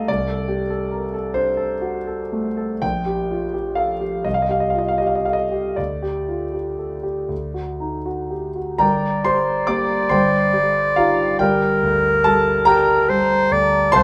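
Yearning and elegiac, this brief passage from a longer romantic classical duo for clarinet and grand piano unfolds in G minor at a slow, flexible 39-49 BPM in dotted quarters, its 6/8 lilt stretched by rubato. A warm, intimate concert grand opens alone and carries the accompaniment throughout, reaching from a deep bass up into its high register, with the noise of its action audible. Over the first 8.8 seconds the harmony drifts through D7/C, Gm/Bb, C5, G5/D and a D chord. At 8.8 seconds the clear, classical-style clarinet enters as the solo voice, singing a narrow melody between Bb4 and D5 as the piano settles onto Gm, Cm/G and back to Gm. Both instruments sit up front in a natural sound with light reverb, the duo tuned slightly low to A4 = 438 Hz, until the passage breaks off at 14.0 seconds.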